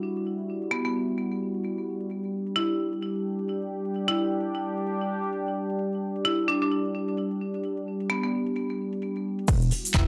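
Aggressive and swaggering, this bass house excerpt at 130 BPM in E minor with a 16th-note swing opens on an evolving, ring-modulated sawtooth pad holding an Emadd9 chord with sidechain pumping, joined by a house kit of crash, handclaps and metallic, overdriven hi-hats heard in a large room and by a bright, woody marimba melody carried on delay, until at 9.5 seconds a punchy kick, a grainy egg shaker and a distorted, wobbling, tube-saturated bass arrive, followed at 9.9 seconds by a decaying digital FM bass, all set in a moderate plate reverb.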